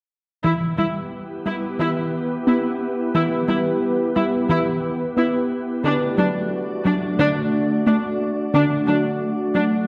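A dark, reverberant scoring-stage sound frames this short cinematic excerpt in E minor at 89 BPM, futuristic and relentless, where a dusty, warbling pluck with chorus, phaser and tape echo spins arpeggios from 0.4 seconds beneath a clear, lush symphonic viola section bowing accompaniment with vibrato, while a glassy FM pad enters at 1.0 seconds with slow-attack sustained chords through its own ensemble chorus and reverb, the harmony moving from Em to D at 5.8 seconds.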